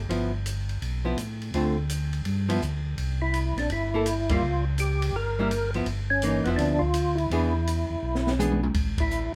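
Swinging at 166 BPM in G mixolydian, this greasy soul jazz organ trio excerpt sets a round, lightly overdriven organ bass with slow rotary under dark, clean hollow-body archtop chords and an acoustic kit with boomy kick and high-tuned snare, and a fat, percussive organ melody with key click joins them at 3.2 seconds over changes from G13 through C#dim7 and E7, punctuated by band accents and a drum fill at 8.0 seconds, all in a moderate club reverb.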